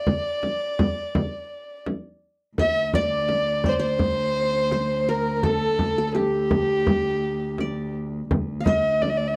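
Stately and festive, this cut from a longer Arabic maqam ensemble piece moves at 84 BPM in a straight 4/4 in D maqam bayati, led up front by a dark, woody violin played sul tasto with vibrato and a touch of slapback echo. A bright-edged qanun, played with fingerpicks, traces a second line in the background while a close, dry frame drum keeps time. At 2.6 seconds a rich, nasal cello enters with a soft-attack drone on D2, bowed with expressive portamento, all within a dry, close 1970s-style studio sound.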